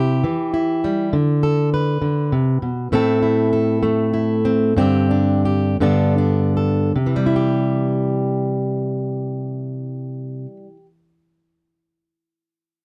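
The recording is close and detailed, with little reverb, placing a full-bodied, jumbo-sized steel-string acoustic guitar up front in this short folk excerpt cut from a longer piece. Played solo and fingerpicked in a gentle, warm 6/8, the plugged-in guitar moves from C through D5, Am, Gsus4 and Gadd9, slowing between 2.9 and 7.0 seconds before settling back on C. The guitar stops at 10.9 seconds.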